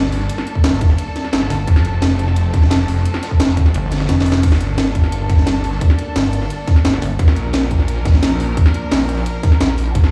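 A straight 4/4 pulse at 174 BPM drives this mechanical, dark slice of technical drum and bass in G minor, led by a tight, overdriven electronic kick and a layered drum and bass kit with a cracking snare and bright hats, while a gritty, high-tuned breakbeat kit with a rolled-off top sits in the background. Up front, a snarling distorted saw bass growls with detuned unison, a moving notch and sidechain pumping, and a heavy, chorused pluck wobble bass pulses in for short bursts, first at 1.5 seconds. Smooth bowed strings with light vibrato hold sustained, pumping chords that move from Gmadd9 to F and later to Bb, all inside a large studio reverb, with a drum fill at 4.1 seconds leading into a repeat of the section.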